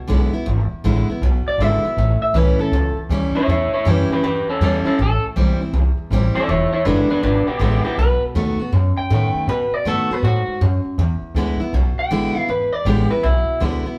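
Rowdy and upbeat, this swinging rockabilly excerpt pairs a woody, thumpy pizzicato upright bass and a full-bodied picked steel-string acoustic guitar with audible finger squeak against a bright, twangy, slightly broken-up electric guitar melody from a small old amp that enters at 1.5 seconds, all captured as a band playing live in one room with moderate large studio reverb.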